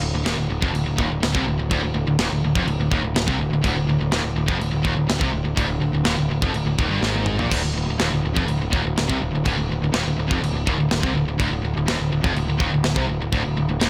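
Heavy metal in D minor at 124 BPM, this dark, heavy excerpt sets three bright, distorted picked guitars playing a low riff in the background, one of them compressed and another double-tracked, over a growling, overdriven electric bass that sits up front. A tight acoustic drum kit enters at 0.3 seconds with a tight kick, medium-tuned snare, toms, crash and china cymbals, its top rolled off and placed forward, and drops a fill at 7.0 seconds. The whole sits in a small room ambience, staying on D minor throughout.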